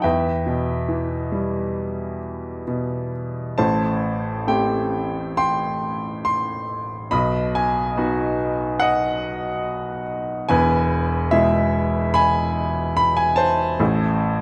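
Reflective and wistful, this classical excerpt for solo piano unfolds in a lyrical, unhurried way, its four-beat pulse loosened by a rubato feel. A bright baby grand piano carries everything alone from 0.0 to 14.4 s, its brilliant, natural tone sitting up front and ringing with long sustain across a span from E1 to C6. A brief opening passage gives way at 3.6 s to a longer second passage, with the harmony moving from E minor through A minor seventh and B to an E major chord before settling on A minor at 13.8 s. The piano sits in a moderate recital hall reverb, framed by a dark, warm production. Cut from a longer piece, the recording feels like a wistful moment of remembrance caught mid-thought.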